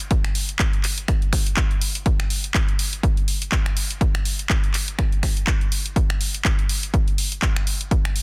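A layered, up-front house drum kit of finger snaps, handclaps and hi-hat opens at 0.0 s, with a touch of soft clipping on the snare and studio reverb. A punchy, tape-warm electronic kick enters at 0.1 s, sitting louder than the kit. Together they drive an energetic yet bittersweet 123 BPM groove in 4/4 with a light swing on the 16ths, set in digital ambience and a dense, heavily limited modern master.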